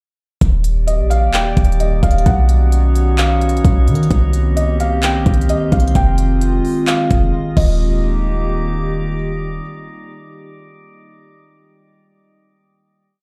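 A knocking, overdriven trap kit sits up front, its sparse half-time beat of kick, crisp hats with fast rolls, handclaps and crash driving this blissful, dreamy cloud-rap piece at 130 BPM in Eb major, with a deep, boomy 808 bass following the kick in long sub notes with pitch slides. Around them drift a warbling, nostalgic tape-like pad that pumps against the beat, a faint glassy texture of drifting overtones, and a soft felt-muted upright piano repeating a sparse, intimate melody like a sampled loop through digital delay. The whole is bathed in large studio reverb, a brief silent gap opens at 7.3 seconds, and a final hit from 7.8 seconds lets the pad and glass texture ring out to 10.6 seconds.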